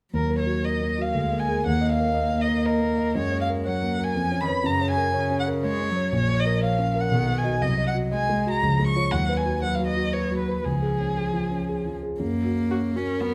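Stormy and dramatic, this quick classical-period piano quartet movement in 3/4 at 120 BPM moves from Eb minor into F# major at 6.1 seconds, with an expressive, up-front violin melody sung with vibrato and portamento over an intimate, airy sul tasto cello line and a dark, mellow concert grand with deep bass, while a bowed viola joins the accompaniment only at 12.7 seconds, all set in a moderate recital hall reverb with close, detailed microphones.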